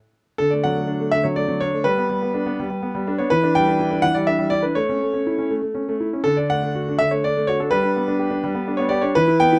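Lilting in 6/8 with a straight feel at 82 dotted-quarter beats per minute, this cheerful, graceful piano sonatina in the classical-period style moves through D, G, E minor seven and A before circling back to D and G, in D major tuned slightly low to A4 = 437 Hz. A solo concert grand carries the whole fragment from 0.4 to 9.6 seconds, ranging from D3 to G5 with a natural, warm tone and deep bass. Close, detailed miking with little reverb places the instrument up front in this short cut from a longer piece.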